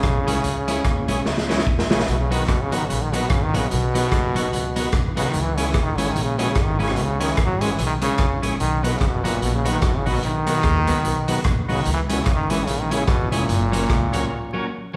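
An upbeat, joyful ska groove at 147 BPM in B major, swung on the eighths, opens with a brilliant, close-miked trombone carrying the melody up front over a woody pizzicato upright bass and a raw, gritty garage drum kit with a punchy kick and a pumping small-room sound, with a drum fill at 1.3 seconds. In the background sit a slightly broken-up, compressed electric guitar and thick, overdriven tonewheel organ stabs with key click and vibrato, while very quiet, crisp group handclaps join at 2.5 seconds. The chords move between C#m and B before landing on F#, a short break arrives at 14.3 seconds, and the live-in-one-room take carries a wet large studio reverb and vinyl crackle in this excerpt of a longer piece.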